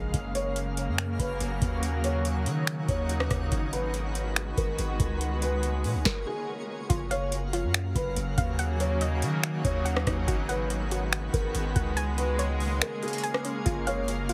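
Dreamy and blissful, this atmospheric cloud-rap hip hop runs at 142 BPM in a half-time feel in F# major, cycling through lush seventh chords as a shimmering, detuned ambient pad with chorus and reverb pumps beneath a deep, mellow 808-style bass and a booming, overdriven analog drum machine with a crisp snare and metallic hats. A felt-muted upright piano carries a soft, intimate melody through delay, while a twinkling granular texture sparkles in the background, and a soft, round pluck adds dark arpeggios from 6.9 seconds. The heavily compressed, radio-like sound keeps the mix dry and close, with a stop at 6.1 seconds and a short break at 12.8 seconds in this cut from a longer piece.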